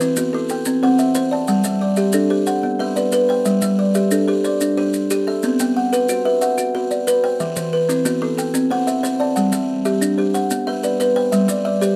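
Hypnotic and gently warm, this short cut from a longer piece sits in the southern African traditional style, built on an mbira-style interlocking cycle in 12/8 at 122 BPM, counted in dotted quarters with a straight feel in G major. Two kalimbas carry the whole twelve seconds with arpeggios: the louder, up-front one has a woody, hollow-box character, a soft fingertip pluck and a buzzing, ringing tone, ranging from E3 to A5. The second kalimba, from E3 to F#5, sounds drier and more solid-boarded, its thumbnail plucks short, full and close-miked. Maracas add a grainy, mellow acoustic shimmer, close yet quieter than the kalimbas. The harmony cycles through C, G5, Bm and Em, returning to G5 at 11.3 seconds, all set in a light reverb.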